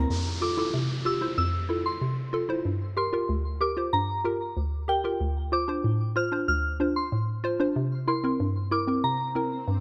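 A straight 4/4 dancehall groove at 94 BPM in F major sets a sunny, summery mood for this short cut, where an up-front, bouncy square-wave pluck with chorus carries the accompaniment, a very quiet fingerpicked nylon-string guitar arpeggio is heard only in the first 0.7 seconds, electronic downlifter and swell effects sit low in the background, and a soft, pure FM synth bell with chorus and digital delay sings a mellow melody from 0.4 seconds over Fmaj7, Gm7, Dm7 and C7, all within a dark production with light reverb.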